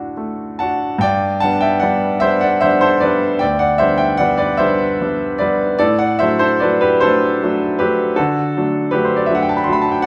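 A classical romantic nocturne fragment for solo piano in G major, tender and dreamy, unfolds in a slow, rubato 12/8 at 44-54 BPM (dotted quarters) as a bright concert grand with a deep bass and natural tone, placed up front and ranging from D2 to C6, moves from D to G at 1.0 s and on to D7/A at 5.8 s within the moderate reverb of a recital hall.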